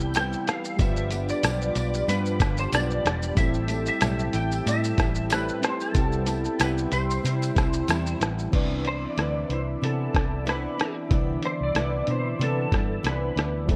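A muffled, pitched-down lo-fi drum kit sits up front with a thumpy kick, rim clicks, hi-hat, shaker and crash, entering at 0.1 s and setting a hazy, sunny bedroom-pop groove at 93 BPM in 4/4 with a light swing. Beside it, a dark, round, foam-muted electric bass punches out the low end. A fingerpicked flamenco guitar on fresh strings carries the accompaniment with an analog chorus and a warbly pitch drift, while detuned analog keys with pulse and sawtooth tones, a filter sweep and decaying notes sit in the background. A smooth sawtooth pad with a slow attack, long release and a moving notch holds sustained chords behind them, and a jingly, band-limited tambourine adds vintage sparkle until 8.5 s. Over the top, a clean, scooped lap steel plays the melody with slide and volume swells, softened by ensemble chorus. In C major, the harmony moves from Cmaj7 through G7 and Am7 to a Cmaj9 at 8.5 s, all bathed in light digital ambience in this section cut from a longer piece.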